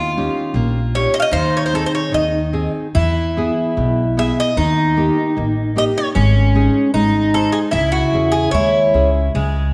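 In a rubato 2/4 at 76 BPM, this mournful, longing fado-style ballad sets a bright, shimmering, octave-doubled fingerpicked twelve-string acoustic guitar second line up front beside a full-bodied classical nylon-string guitar accompaniment with finger squeak and a woody, growly pizzicato upright bass, and a metallic, double-strung Irish bouzouki enters at 1.0 s to carry the picked melody up front until 9.1 s, over chords moving from D#7 through E and G#sus4 to C#m in a wet scoring-stage reverb.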